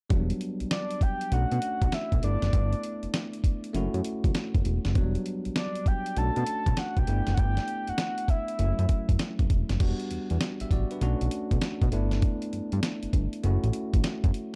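A dark, dry production frames this confident, punchy new jack swing track, cut from a longer R&B piece and carrying a swung sixteenth-note feel. Gritty, compressed sampler-style drums with a thumpy kick and fat snare sit up front beside a thick, detuned analog bass with filter sweeps and ring modulation, while a bell-like, clean tine electric piano supplies the chords. A round, mellow octave-layered synth lead with chorus and vibrato carries the melody from 0.7 to 9.5 seconds, after which the band moves into a second section.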